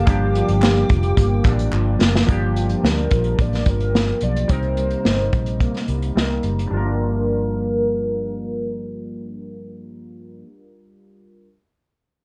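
Indie bedroom pop with a lonely, hazy mood, cut from a longer piece and carried by a straight pulse. A woody, clarinet-like synth lead sings the melody, its hollow tone softened by phaser, chorus, delay and a low-pass filter, while glossy, detuned retro synth keys and a dark, slightly broken-up electric guitar fill in the accompaniment. A flute-like pad hangs softly in the background only until 2.3 seconds, and a group handclap briefly joins in the distance. Underneath, a round, punchy, foam-muted electric bass and an up-front acoustic drum kit played with bundle sticks anchor the groove, the drums roughened by 12-bit sampler grit, with a drum fill at 1.7 seconds and the kit dropping out at 6.7 seconds. The harmony moves from Gm7 to Cm7 and back, the keys run through a filter sweep in the middle section, and the whole mix sits in light reverb with the faded character of cassette tape.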